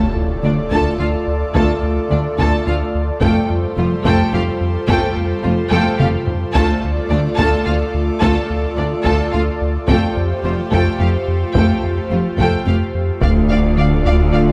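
A round, dark analog bass riff drives this futuristic, relentless hybrid orchestral and electronic film cue in 6/8 at 72 BPM, its harmony moving between Dm and Fadd9, over an airy, breathy pad with chorus and a huge, bright impact that opens the fragment. Lush bowed strings fill the space, with violins carrying a second line and violas adding expressive portamento in the background, while rich cellos and very quiet, distant double basses hold the low end alongside a band-limited taiko ensemble that plays a fill near 5.7 seconds. At 13.2 seconds a violin melody, a mellow French horn section and a punchy, pitch-dropping sub bass enter, all set in a moderate scoring stage reverb.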